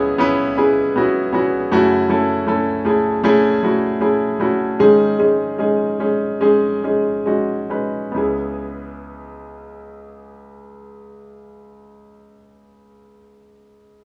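Melancholic and emotional, this short pop fragment moves at a slow 68-80 BPM in a straight 4/4 pulse. A bright concert grand piano carries the whole accompaniment from 0.0 to 14.0 s, ranging from a deep bass low register up into its middle, with a brilliant, up-front tone and short sustain. The harmony moves from C#m7 to F#m7 and then to a G#sus4, and the tempo slows between 1.7 and 8.1 s before the music returns to C#m7 as a new passage begins. Light small-room reverb gives the piano a close, intimate space. The recording has the rough feel of a home demo, with the ambience of a small room and the piano tuned slightly sharp at A4 = 441 Hz.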